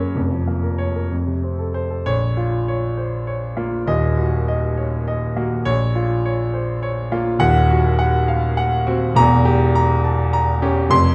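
Passionate and agitated, this brief excerpt from a longer classical work is a virtuoso piano study in 6/8, played with free, elastic rubato. A single grand piano carries the whole piece, its tone warm, natural and close, reaching from deep bass notes up into the upper register. After a short opening phrase, a new section begins at 2.1 seconds and runs to the end at 11.1 seconds, its harmony darkening through minor chords toward tense diminished sonorities. A recital hall's reverb lends a lush, lingering bloom around the instrument. The overall production is dark and warm, giving the turbulent writing a rich, shadowed weight.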